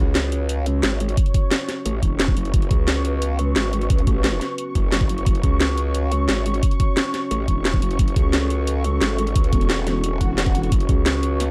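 Dark technical drum and bass at 176 BPM in F# minor, futuristic and mechanical, with a growling, saturated bass wobbling through a formant filter and chorus up front while a deep, moody analog pad holds sustained chords under vintage 12-bit sampler grit and sidechain pumping. The drum kit enters at 0.2 seconds with a cracking snare and bright hats, an ethereal, airy pad with ensemble chorus and built-in reverb floats high above from 0.8 seconds, and an overdriven, knocking electronic kick lands at 1.2 seconds. A brief electronic swell sits in the background near the close of this dark, digitally ambient excerpt cut from a longer piece.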